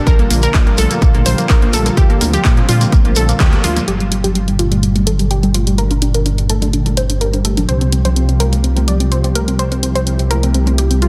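Dense and heavily limited with light digital ambience, this driving, expansive progressive house cut moves at 126 BPM in G dorian, with a lush, warbling chorused pad holding sustained chords over Bb6, Gm and Csus4 and taking a filter sweep from 3.9 s. A punchy, overdriven kick sits up front beside a deep, rumbling detuned saw bass, hitting a band accent at 3.4 s before the kick drops out, while a house kit of overdriven claps and hi-hats runs throughout. A detuned unison pluck spins arpeggios through dub echo, with grainy, close shekere and vintage, band-limited congas pumping softly in the background.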